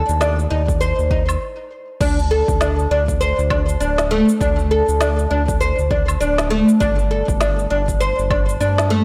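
Hypnotic and warm, this organic downtempo excerpt moves in 4/4 with a loose sixteenth-note swing. A bright, plectrum-plucked fretless oud sits up front playing arpeggios through a digital delay, its double strings ringing over a round, deep analog bass built from detuned sawtooth, sine and triangle tones. An organic electronic kit adds cabasa, crash cymbal, woodblock and a woody snare with a tape-tinged character, re-recorded in a large room. A punchy, layered electronic kick enters at 0.7 seconds. After a brief stop at 1.4 seconds, the opening chordless passage gives way to D5 and then G5 chords. The mix carries light reverb and a blown-out, overdriven sound.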